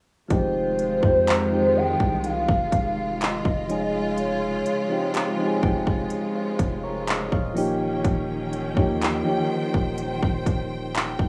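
A hollow, woody clarinet-like synth lead carries the melody with vibrato, chorus and analog delay until 5.1 seconds in this moody, late-night contemporary R&B excerpt in F minor at 62 BPM. Beneath it sit round electric-piano-like keys, a lush, distant symphonic string section with sidechain pumping, a deep sine 808 bass, and an up-front trap kit with a hard-clipped kick, crisp hats and handclaps. A very quiet, glassy wavetable pluck with ring modulation and a filter sweep enters at 1.3 seconds and drops out at 6.7 seconds as the harmony moves through Fm7, Dbmaj7/F and Eb7, all set in a rough home-demo mix with wet studio reverb.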